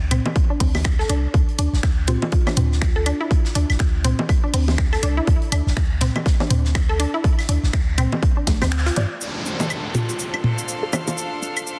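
Minimal techno with a quirky, hypnotic swing, built on an up-front punchy kick, a deep sine sub bass with a pitch-drop attack, and a squelchy, detuned blip pluck riff that pumps against the kick, dressed in chorus and tape echo. Layered house drums with cabasa, finger snaps and hi-hat sit beside tape-warm electronic toms, claves and bongos, while a big-room acoustic kit with a fat snare lurks in the background and a woody kalimba rings out in brief echoed notes. The kick drops out at 8.7 seconds on a band accent, and at 9.2 seconds a downlifter and a clear, biting bowed string section enter as the bass and big kit fall away.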